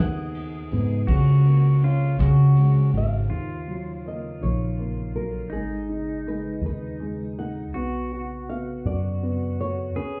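This acoustic folk-pop ballad in 6/8 has an intimate, tender mood, and this short section is cut from a longer piece. A dark, thumb-plucked flamenco guitar carries the melody with audible finger squeak, while a clean, twangy pedal steel guitar played with fingerpicks adds a second line with slide and volume swells. A boxy upright piano with short sustain fills in the accompaniment beneath them, and a growly, round fretless electric bass sits up front as the loudest part. Soft brush drums, with dark cymbals and a punchy kick, play only from 0.3 to 3.1 seconds before dropping out. The whole mix sounds muffled, as if heard through a wall, with a club reverb coloring the sound, and the chords move from G#m7/D# through D#m7 and G#m to close on Bm.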